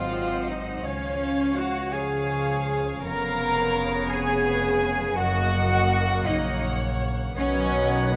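Bathed in a moderate concert hall reverb, this serene fragment of a slow romantic orchestral movement drifts in a rubato 6/8, with a soft-attack, sul tasto violin section floating the melody above a background second violin line, an airy, vibrato-touched flute, a smooth clarinet set back in the mix, woody, lush violas, very quiet mellow horns, clear trombone chords in the background, ringing thumb-plucked harp arpeggios, pure cellos and rich, up-front double basses carrying the bass.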